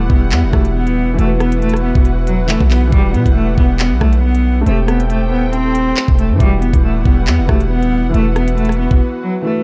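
Drill hip hop in E harmonic minor at 138 BPM with a half-time feel, this dark, tense excerpt is cut from a longer piece. A single bowed cello carries the melody up front with a reedy, gut-string tone in a period style, moving between F#3 and C4 over chords of Emadd9, Bsus4/E and Am7. Beneath it, a felt-muted upright piano gives soft, intimate accompaniment, while a con sordino studio string section holds veiled, sustained chords with vibrato. A punchy 808-style bass with a sine body, a noise layer, a fast attack and a decaying tone sits up front alongside an electronic drill kit of knocking kick, crisp hi-hats, handclaps and rim clicks. The bass and drums drop out for a break at 9.0 seconds, leaving the cello, piano and strings to finish at 9.6 seconds in a small room with dark production.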